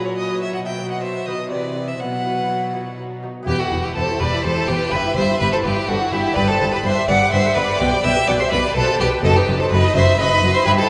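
A clear, focused solo violin sings up front with vibrato as this stormy, dramatic baroque-style concerto passage in E minor opens at 125 BPM in 3/4, carried by two rich chamber violin sections (one doubling the melody in the background, one on a second line), a lush viola section, an intense symphonic cello section and a very quiet, delicate fingerpicked gut-string lute, until an expressive, close double bass section enters at 3.5 s to deepen the bass as the harmony moves from B to E minor, all within a wet church reverb.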